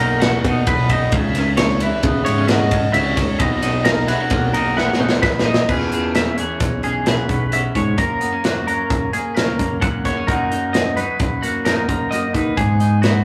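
A twelve-string electric guitar opens with bright, twangy arpeggios, its picked, compressed tone wrapped in spring reverb, alongside a dark, clean electric guitar playing accompaniment and a punchy fingered electric bass. This cut from a longer piece sits between math rock and midwest emo, wistful yet playful, moving at 131 BPM in 5/4 with a straight feel in E lydian. The acoustic drum kit enters at 0.2 seconds, up front with a tight kick, a medium-tuned snare, hi-hat, ride and crash cymbals, and it plays a fill from 4.8 to 5.7 seconds that leads into a new section. Harmony drifts through Bmaj7 and C#m7 at first, then shifts to E6, F#7, Bmaj7/F# and G#m7 in the second half. The sound is that of a rough rehearsal-room recording, with light, small-room reverb giving the band a close, unpolished presence.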